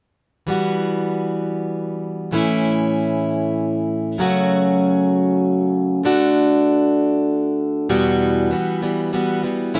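A modest small-room ambience surrounds this live, in-the-room recording, a short cut from a longer folk piece in E dorian at 97 BPM in a straight 3/4. A single picked, plugged-in steel-string acoustic guitar sits up front as accompaniment from 0.5 to 9.8 seconds, its concert tone carrying audible finger squeak as it moves through Emadd9, A, F#m and D before returning to Emadd9 at 7.9 seconds. The mood is melancholic and reflective.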